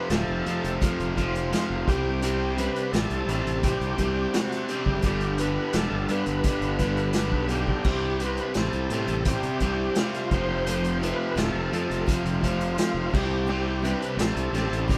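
A vintage drum kit sets a straight, driving 4/4 groove in this sunny classic rock passage, cut from a longer piece, with a punchy kick, medium-tuned snare, hi-hat, crash and dark cymbals in a small, pumping room. Entering with the drums at 0.1 s, a fingered electric bass sits up front with a growly fuzz overdrive as the chords move through F, Csus2 and G. A double-tracked, crunchy overdriven guitar plays the riff just as prominently, while an overdriven tonewheel organ carries the melody in a thick, gritty voice through a slow rotary speaker with chorus vibrato. Beneath them, a picked jumbo steel-string acoustic guitar adds very quiet, full-bodied accompaniment, and a second, clean tonewheel organ holds sustained chords, barely audible, through its own slow rotary speaker. The band sounds as if it is playing live in one room, wrapped in moderate studio reverb.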